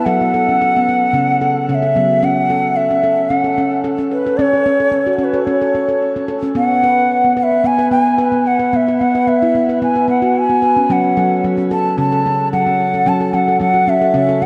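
Bathed in a wet spring reverb and an echo-heavy mix, this hypnotic, gentle world meditation excerpt sets an airy, unsteady, close-miked bamboo bansuri melody with vibrato against ringing, mellow nitrided-steel handpan arpeggios played with soft fingertips, both parts up front and wreathed in shimmer reverb and tape echo.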